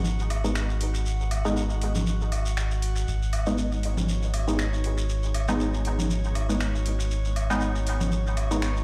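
Meditative, nocturnal dub techno at 119 BPM in G# minor, cut from a longer piece, where a round, up-front sub bass sustains G#1 under a single G#m chord, a close, grainy shekere and a glassy drifting-harmonics texture with chorus and built-in reverb, joined at 0.3 seconds by a deep house kit of finger snaps and metallic overdriven hi-hats and overdriven woodblock and congas caught in dub echo, then at 0.4 seconds by a muted, detuned filtered chord stab with chorus and phaser, all heard in a bare room through a big sound system.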